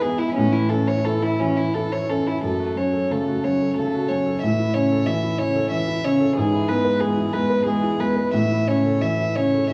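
A moderate recital-hall reverb over small-room ambience frames this brief neoclassical excerpt for piano and strings, tender and hopeful in A major, tuned to A4 = 438 Hz and moving in a rubato 3/4 at around 86-93 BPM. A felt-muted upright piano sits up front with a mellow, intimate, short-sustained accompaniment, while a single violin carries the melody, bowed sul tasto with a soft attack and a pure, floating tone. A solo cello, dark and woody with vibrato, adds a second line in the background as the harmony moves from A through F#m and E/G# back to A, with the music opening into a new section at 2.4 seconds.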